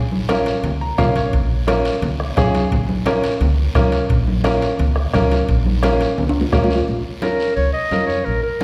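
A hall-like, wet reverb with a 1.4-second tail surrounds this short cumbia passage in Bb minor, moving at a driving 173 BPM in straight 4/4 with a passionate edge. A bright upright piano sits up front, intimate and slightly detuned, with audible action noise, and it plays a brief fill early on. Beneath it, a pizzicato upright bass with steel strings gives a woody, warm low end, while low-tuned, ringing congas played with soft hands sound compressed and saturated alongside a raspy guiro. A soft-beater bombo with a vintage, band-limited character and close, metal-shell timbales stay in the background, and both drop out during a drum fill that runs until 6.9 seconds. At 7.2 seconds a clear, close-miked clarinet enters up front as a classical-style solo voice, taking the melody for the final moments.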